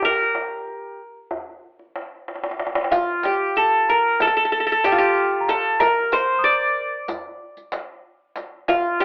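Heard through a worn, warbling cassette with a narrow telephone-like tone and a small room around it, this melancholic, soulful fragment of a Turkish makam ensemble piece moves in a straight 9/8. A plucked qanun carries the melody up front, its bright-edged triple strings set in plate reverb, over a deep, clay-shelled darbuka that plays a fill at 2.3 seconds. At 2.8 seconds a delicate, slightly out-of-tune celesta adds a sweet, bell-like second line in the background, and a close, dry riq with bright jingles joins at 2.9 seconds.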